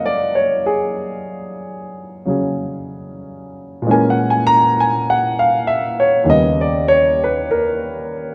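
Intimate and tender, this short excerpt from a longer jazz ballad unfolds at an unhurried pace in 4/4 with a gentle swing on the eighth notes. A solo grand piano carries the whole passage, its tone dark and mellow with a natural, up-front presence and a short sustain that keeps each note close and clear. The playing spans from the low bass register up into the upper treble, moving through an F#69 chord, then A#m7b5 at 3.9 seconds and D#7b13 at 6.3 seconds. A stone room reverb surrounds the instrument with a damp, echoing air, giving the feel of a performance captured live in a single space. The result is quiet and personal, like a late-night reflection played just for the listener.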